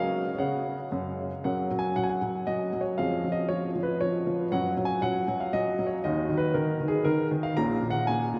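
A clear, intimate baby grand piano opens this cheerful, graceful classical-period sonatina excerpt in F# major, moving at 118 BPM in a straight 3/4 across a range from Bb1 to Bb5, its natural, up-front tone carrying audible action noise while a wet cathedral reverb with a 5.7-second decay lends a lingering halo as the harmony passes from F# through C#/E# and D#m to Bbm, all tuned to A4 = 441 Hz.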